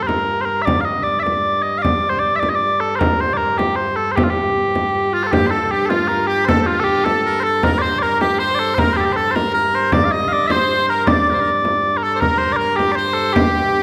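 Sweet, mellow small bagpipes carry the melody up front with a continuous, vibrato-laden tone in this ancient, driving medieval dance in G minor, set in 6/8 at 104 BPM and quickening throughout. Beneath them, a nasal pipe organ cornet stop holds a low drone with a touch of chiff, while a deep, saturated frame drum played with soft hands keeps the pulse. At 5.1 seconds a bright, folk-style shawm enters with a second line, all of it heard through a wet recital hall reverb in this excerpt from a longer piece.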